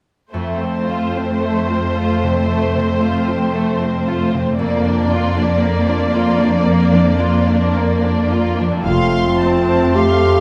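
A rich, focused violin section sings a lyrical, serene melody in this classical excerpt in F major, moving freely at about 51-58 BPM in 4/4 as the harmony shifts from F to Bb/F and back. Beneath it, a smooth second violin line, expressive violas with vibrato and portamento, lush cellos holding a low F, and a bright, ringing harp playing arpeggios in the background blend in a wet scoring-stage reverb. At 8.9 seconds a mellow solo clarinet adds a second line and a distant, soft-attack horn section holds sustained chords, while a double bass section joins on a deep F1 until 9.9 seconds.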